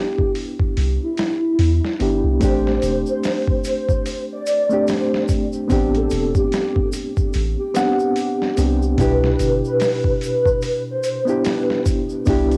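Over a dusty, gritty, overdriven sampler-style drum kit with a thumpy kick and medium-tuned snare, swung at 73 BPM in A minor, this hypnotic, cinematic trip hop fragment drifts between Cmaj9 and Am11. A reedy electric piano with fast tremolo and a breathy, chorused sine lead with vibrato both open at 0.0 seconds, while a deep, round 808-style bass sits up front from 0.8 seconds. A bright tube shaker stays in the background from 2.4 seconds, and the whole cut carries the soft grain of a home cassette recording in a booth.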